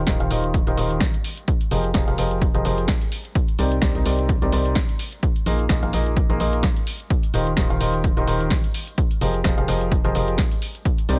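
A hollow, organ-like FM bass opens this uplifting piano house excerpt, joined almost at once by a clear, up-front baby grand piano riff with a low-pass filter and dub echo, both pumping against a tape-warm electronic kick and a punchy analog drum machine's hi-hat and snare, all swung lightly over rich chords such as Eb69, Fm11 and Cm9 in a dry, close sound.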